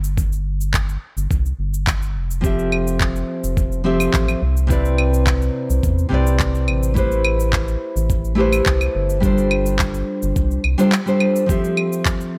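Relaxed and warm, this sunset chillout excerpt moves at an unhurried 106 BPM in a straight 4/4, cut from a longer piece. A round, deep analog bass with a dark, wave-folded tone sits up front from the start, joined by tape-warm electronic cabasa, handclaps and claves and a gritty, thumpy sampler-style kick that has been re-recorded in a large room. At 2.4 seconds a fingerpicked nylon-string guitar enters, classical in character and placed close, its notes trailing through delay and a shimmer reverb. The harmony drifts through lush extended chords, from Fmaj9 to Cmaj9, Am9 and G9sus4 before settling back on Fmaj9. The kick briefly drops out around 10.9 seconds, and the whole recording sits in a moderate recital hall ambience that lends a gentle, airy depth.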